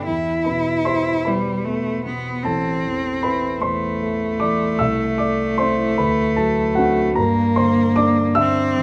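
Serene and tender, this romantic classical duo for cello and grand piano unfolds at a slow 51 beats per minute in 6/8, with a flexible rubato feel and tuning at A4 = 442 Hz. The cello carries the melody from the opening to the close at 8.8 seconds, a single bowed player sitting up front with a rich, intense tone, expressive vibrato and a smooth top end, moving between G3 and E4. Beneath it, the dark grand piano provides accompaniment across a broad span from A1 to E6, its mellow, intimate and vintage character marked by audible action noise and a smooth surface, also placed up front. The harmony begins on E minor, shifts to A minor at 2.5 seconds, passes through A minor over C and D7, then lands on Em7b5 over G at 7.2 seconds. A light reverb surrounds both players, and the passage is cut from a longer piece.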